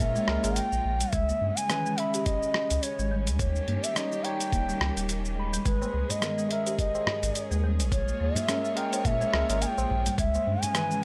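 A mellow bass bansuri carries the melody from the opening, its bamboo tone airy and touched with vibrato and analog delay, over a hypnotic, earthy organic downtempo groove at 106 BPM in G# harmonic minor with a swung 16th-note feel. Beneath it, a bright, clean tine electric piano and a rich, bowed string section hold the harmony with a sidechain pumping motion, moving through chords such as A#m7b5, C#m7, D#7 and G#madd9. A folk marimba with medium mallets adds woody, rustic arpeggios with a hint of delay, while a deep, round sub bass with tube saturation sits up front. The beat comes from a gritty, overdriven sampler-style soul kit of cabasa, hi-hat and rim click, paired with a thumpy electronic kick, both placed in studio reverb. A low-tuned tabla enters in the background at 5.8 seconds, and the whole passage, cut from a longer piece, has a dry, gritty hardware character.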